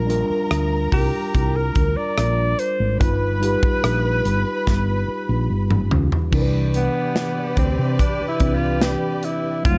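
A straight 4/4 groove at 72 BPM anchors this lush, smooth 1970s-style soul passage in C major, cut from a longer piece. The polished acoustic drum kit sits up front with bright cymbals, a medium-tuned snare, rim clicks, toms and a tight kick, and it plays a fill from 4.7 to 6.3 seconds. A woody, growly fretless electric bass, round and hollow-bodied, shares the foreground, while a mellow, clean tine electric piano supplies the accompaniment and a rich bowed string section adds a vibrato-laden second line with a smooth top. An alto saxophone enters at 0.9 seconds with a jazz-style, scooped vibrato tone, carrying the melody and then opening into a solo at 6.3 seconds. The harmony moves from Bb6 through G7alt to Cmaj9, and the production is dark and warm, set in a small room reverb.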